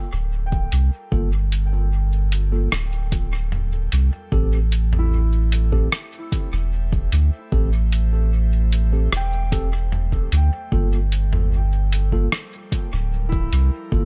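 This ambient dub fragment, cut from a longer piece, drifts at 75 BPM in a straight 4/4 with a hazy, spacious mood in G dorian, moving from Gm9 to Am7 and back to Gm9. A deep, round sub bass sits up front with a soft, sustained tone. An electronic kick, tape-warm and re-recorded in a small room, arrives at 0.5 seconds, followed at 0.7 seconds by a muffled, pitched-down sampler-style kit of hi-hat, rim click and toms that is bathed in studio reverb and dub echo. An airy, breathy pad with a noise layer and chorus fades in across the whole fragment, holding sustained chords in the background, while a thumb-plucked concert harp rings out arpeggios through a low-pass filter and tape echo. From 1.1 seconds a mellow, clean tine electric piano adds dub-echoed stabs, as if heard through built-in speakers, all set in a digital ambience.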